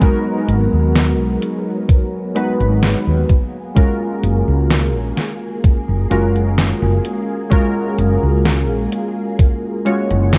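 A thumpy, sampler-style electronic kick drum and a detuned 8-bit drum machine's medium-tuned snare and hi-hat set a straight 64 BPM pulse in 4/4 for this dreamy, nostalgic vaporwave excerpt in F# major, joined at 0.5 s by a growly, round fretless electric bass, while warbling lo-fi synth keys with subtle chorus and tape echo carry the G#m9 to F#maj9 chords over a silky string machine with phaser and ensemble chorus in the background, the kick dropping out at 9.6 s in a dark, cassette-tinged mix with light reverb.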